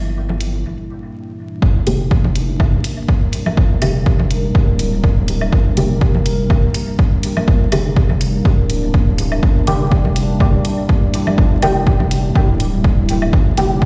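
Meditative, deep dub techno cut from a longer piece, moving at 123 BPM in G dorian with a light 16th-note swing, where a dark, detuned sawtooth pad and a round, wave-folded analog bass pump under the sidechain from the start, congas and woodblock with dub echo and a tape-warm electronic hi-hat enter within the first second, a short break gives way at 1.6 seconds to a punchy, up-front electronic kick, and a soft, nasal chord stab with chorus, phaser and dub echo arrives just after under a filter sweep, all played on a big sound system in a bare room with large studio reverb and vinyl crackle.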